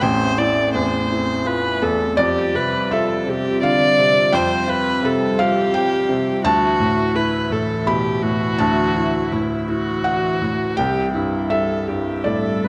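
A rubato 3/4 at 83 BPM carries this neoclassical piano and strings excerpt, its longing, fragile mood drifting through Am7, Fsus2, Dadd9 and C. Up front, a felt-muted upright piano with audible action noise plays intimate accompaniment across a broad register beside a single warm viola bowed sul tasto with light vibrato and an airy, soft-attacked tone. Behind them, a chorused pulse-width pad holds shimmering, retro sustained chords, all set in a moderate recital hall reverb.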